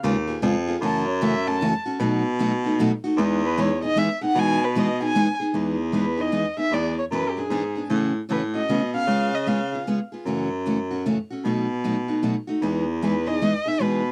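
This lively, charming acoustic string swing piece in the jazz manouche style moves at 153 BPM in a swung 3/4, in E major. A bright, picked steel-string acoustic guitar carries the accompaniment from the start, its fresh strings sounding crisp, with audible finger squeak. A clear, punchy baritone saxophone holds down the bass line with scooped notes, vibrato and a forceful jazz delivery. The violin takes the solo lead at 0.9 seconds with a nasal, slightly boxy bowed tone, vibrato, soft attacks and expressive portamento, then drops out at 9.9 seconds and returns at 13.0. The chords cycle through C#7, F#m7, B7 and Emaj7, with a turn to E7 and A6 in the second half. The dry, close 1970s-style studio sound keeps all three parts up front in this cut from a longer piece.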